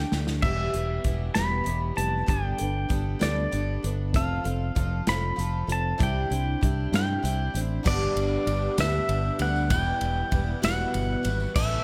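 Folk rock and heartland rock fragment in a nostalgic, jangly 6/8 at 65 BPM, where a brief opening drum fill sounds beneath a clean, compressed pedal steel melody with volume swells, slide and analog delay, carried over a shimmering, octave-doubled picked twelve-string acoustic guitar, a punchy, up-front fingered electric bass and an airy, polished country drum kit with a medium-tuned snare, until at 7.9 s the music settles into G major and a dark, reedy musette accordion and a jingly tambourine join in the background, the whole mix sitting in light reverb and small room ambience.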